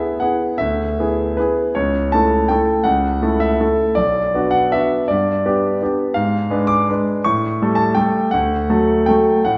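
A rubato waltz in 3/4 sways at roughly 151 to 178 BPM, its pulse stretching and giving in the manner of a classical piano piece. This graceful, playful fragment, cut from a longer work, features a solo concert grand piano heard for its full 9.6 seconds, ranging from B1 up to D6. The instrument sounds bright and brilliant, with a deep bass and a natural, up-front presence. Its harmony moves from E7 through A/C#, Bm, G, G#dim7 and A7 before arriving on D at 8.3 seconds. A wet recital-hall reverb with a 1.7-second decay places the piano in a church or concert hall, lending the performance a sense of space.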